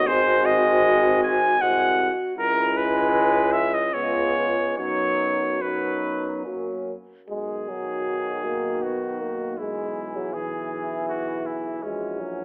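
A close-miked cornet carries the serene, tender melody up front in this hymn-like classical brass band piece in B major, moving in a rubato 3/4 at 70-82 BPM, with a smooth-topped French horn section on the second line in the background, a mellow, soft-attacked euphonium and a warm, distant trombone adding accompaniment with light vibrato, and a roomy tuba with light vibrato holding the bass, all heard through a telephone-like sound and a moderate recital hall reverb in a cut from a longer work that moves into a new section at 7.3 seconds.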